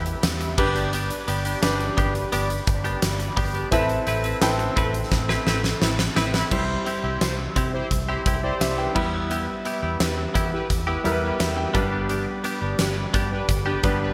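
A steady, straight 86 BPM pulse in 4/4 drives this glossy, uplifting 1980s-style pop excerpt in C major, where a huge arena drum kit with gated reverb, punchy kick and fat snare sits up front over a round, foam-muted fingered bass, a clear baby grand piano accompaniment, a twangy, compressed clean electric guitar riff with subtle chorus and digital delay, and a shimmering pulse-width pad in the background. A band accent and drum fill lead into a second section, with bold analog synth brass stabs entering at 5.8 seconds just before it arrives and the piano adding a fill at 11.0 seconds, all within a bright digital production and plate reverb.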